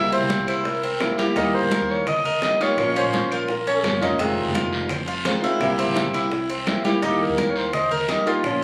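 Cuban son and guajira with a danceable, nostalgic lilt, this short excerpt is led by a clear, classical-style clarinet that sings the melody, drops out at 4.0 seconds and returns at 7.0 seconds over a boxy, fingerpicked old ladder-braced acoustic guitar sitting up front and a metallic, double-strung Cuban tres spinning arpeggios. A dark pizzicato upright bass sits low beneath them, while ringing congas and woody claves fill in the background, joined by very quiet round low-tuned bongos and a raspy guiro. The harmony moves through C7, Eb, Bbm and Fm7, and the whole has the light reverb and compressed, roomy feel of a phone capturing the band in the room.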